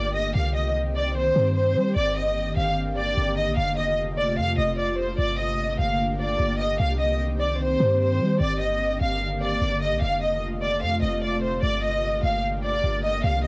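A half-time hip hop groove at 149 BPM in 4/4 sets a brooding, dark mood in G minor, cut from a longer piece. A deep, boomy 808-style bass with a sine-like, decaying tone anchors the low end from F1 to G3 for the full 13.5 seconds. Above it, an ethereal pad warbles with a vintage, detuned character, holding slow-blooming chords under ensemble chorus and its own reverb. Up front, a lush symphonic violin section carries the bowed melody between C5 and F5 with expressive vibrato and a smooth top, set in plate reverb and cassette tape coloring. After a brief opening on Cm, the harmony cycles through Gm, F, Gm and Cm from 2.0 seconds onward, all within a snug booth ambience that gives the home cassette recording an intimate, hazy feel.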